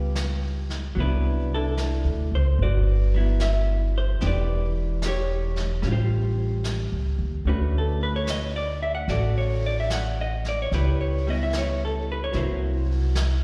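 A clean, compressed hollow-body electric guitar comps with a slapback echo over a woody pizzicato upright bass, and the two open this smoky, intimate jazz ballad fragment at a relaxed 74 BPM with a gentle swing. At 0.2 seconds a vintage brush kit joins low in the mix, with a mellow, rolled-off brushed snare and hi-hat that also carry a slapback echo. The guitar and bass sit up front, and chords such as Cmaj9#11, A7alt and Dmaj7 drift by in a recital-hall reverb that gives the feel of a live gig heard through the venue's sound system.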